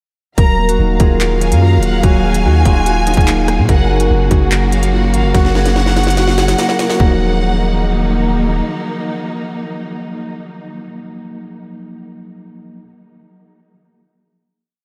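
Drill hip hop in Eb minor at 145 BPM with a half-time feel, ominous and tense, where a looping fingerpicked harp melody and a tine electric piano's rising eighth-note arpeggio, both muffled by a low-pass filter, sit over a lush bowed string pad, a distant violin section's sparse counter-melody trailing ambient delay, deep sliding 808 sub-bass notes that follow a hard-clipped kick, and crisp skipping hats with fast rolls and a sharp snare, the drums dropping out after a fill from 5.3 seconds as the strings and electric piano hold the final Ebmadd9 chord in a dreamy, reverb-soaked haze.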